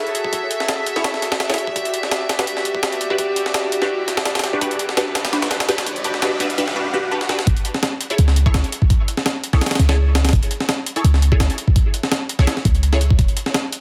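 Drum and bass with a jungle edge at 168 BPM in F# phrygian, this nostalgic, atmospheric cut builds for its first 7.5 seconds: floating, sul tasto strings hold soft-attack chords while a filtered dub chord stab, muted and detuned with phaser, chorus and dub echo, pulses through F#m9 and Em9 over a gritty, pitched-up, tape-toned sampler breakbeat with a thumpy kick. An electronic riser and swell sit in the background from 3.1 seconds, the strings fade out at 6.7 seconds, a drum fill lands at 7.2 seconds, and at the drop a deep, boomy 808-style bass with tube saturation arrives up front under a rootless F#m9. The sound is dense and heavily limited, bathed in an echo chamber reverb.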